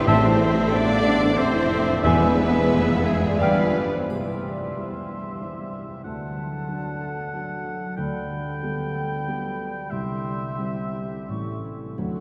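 A warm grand piano stands out in this tender, uplifting orchestral film-score excerpt, carrying the accompaniment throughout in 3/4 at a rubato 85-94 BPM, while a ringing, fingerpicked concert harp spins arpeggios beside it. The opening, in A minor, gathers the full strings: a clear, intense violin section carries the melody with vibrato, joined by a very quiet, expressive second violin section playing a second line, over a smooth, even viola section, a focused cello section and a rich double bass section, all lush and distant. A mellow French horn section holds tight, sustained chords, and very quiet timpani struck with hard mallets sound close and dry until 3.0 s. At 4.1 s the music shifts to C lydian, where the strings and horns fall away, leaving the piano and harp to support an airy silver flute, a soft-attacked oboe with light vibrato and a vintage-toned clarinet, all weaving second lines that end at 11.6 s. 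A dark triangle touches the change of key, the violas and basses return briefly at 12.0 s, and a cathedral reverb bathes the whole in a long, wet tail as harmony moves from Am and E through C, D and Gadd9/D to a closing A7.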